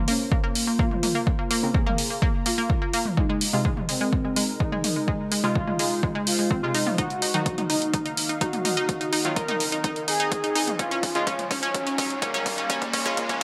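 A punchy, overdriven electronic kick sits up front with an overdriven deep house kit of hi-hat and toms, driving this dark melodic techno build-up, where a fat, brassy analog synth lead with tape echo rides over a bright, detuned analog pluck arpeggio and background synth brass stabs with 12-bit grit and dub echo, all three pumping along with a morphing wavetable pad that also pumps through its phaser, while filter sweeps run across the whole passage, a drum fill begins at 7.0 seconds and a very quiet riser enters at 10.0 seconds in a lush hall.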